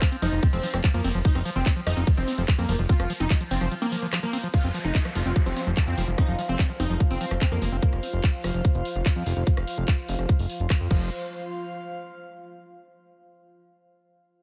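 This excerpt of driving, alien psychedelic trance at 146 BPM opens on a drop, where a tight, up-front electronic kick and a layered garage kit of warm hats, handclaps, rim clicks, ride and crash lock into straight 4/4 beneath a punchy detuned supersaw stab with phaser, tape echo and a cassette-tape grain. A squelchy, screaming acid riff sits in the background with distortion and tape echo, and a resonant drone of moving overtones hovers behind with phaser and built-in reverb, while a fat, wave-folded analog bass with tube saturation enters at 0.2 s. Much of the pumping material is sidechained, a downlifter sinks in around 4.5 s, and from 5.5 s an airy, breathy pad joins and outlasts the other parts, carrying on to the close in a digital ambience.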